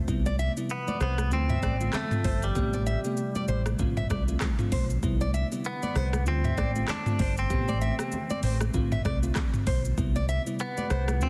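An afrobeats groove with a breezy, sunny mood and a lilting swung feel, cut from a longer piece. A punchy, amped fingered electric bass and an electronic afro-pop drum kit sit up front, the kit mixing a deep kick, metallic hi-hats, handclaps, rim clicks, shaker and toms with vintage 12-bit sampler grit and soft clipping on the snare. A twangy, direct-recorded clean electric guitar carries the picked melody from 0.7 seconds, compressed and dressed in lush chorus and digital delay, while a fingerpicked classical nylon-string guitar with fresh strings plays a high riff through digital delay. A bell-like FM electric piano adds sparkling, mellow chords with chorus, and a glassy, ethereal FM pad hovers very quietly beneath, dark and slow to bloom. Ringing, high-tuned congas played with soft hands add a faint layer of percussion as the harmony cycles through Cmaj7, Dm7, Am9 and F6/A in a light, digital ambience with a dense, heavily limited modern master.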